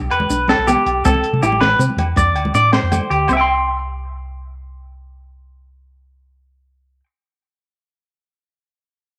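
A straight 12/8 feel at 107 BPM carries this warm, carefree highlife guitar band fragment in C major, where bright, twangy clean electric guitar arpeggios, up front with cassette tape colour and analog delay, ride over a round, punchy hollow-body bass, fingerpicked nylon-string guitar on fresh strings, a compact cocktail drum kit with a high-tuned snare and dark, rolled-off top, and background agogo bells, damped congas and grainy maracas, moving through Gadd9, C and F6 before the kit, hand percussion and nylon guitar drop away by about 3.5 s, leaving bass and electric guitar to continue to about 7 s in moderate spring reverb on a homely cassette recording.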